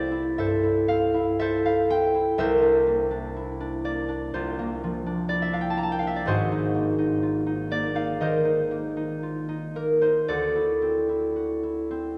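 A solo concert harp carries this peaceful, serene classical piece, its fingerpicked strings ringing out from the front of the sound. The playing moves with a rubato feel over a gentle four-beat metre, spanning from a deep Ab1 up to Bb5. The harmony drifts from a C6 chord through Bbadd9 over C at 2.4 seconds and Ab9 at 6.3 seconds, arriving on D9 near the close. A lush concert hall reverb surrounds the instrument, and the listening position feels set back in the room, giving the notes a long, airy tail. This short passage, cut from a longer piece, unfolds as a single calm section.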